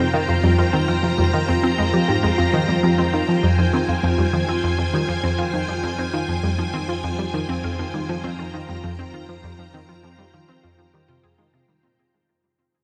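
Ambient, sequencer-driven space music at 100 BPM in F minor, expansive and mysterious, where a round, detuned analog pluck riff with chorus, tape character and delay sits up front in the low register beside a lush vintage string machine holding a sustained Fmadd9 chord with slow attack and ensemble chorus, while a punchy, bright, warbling unison pluck spins delayed arpeggios, all bathed in a dreamy cathedral reverb before this excerpt fades out from 2.4 seconds to its close at 12.0 seconds.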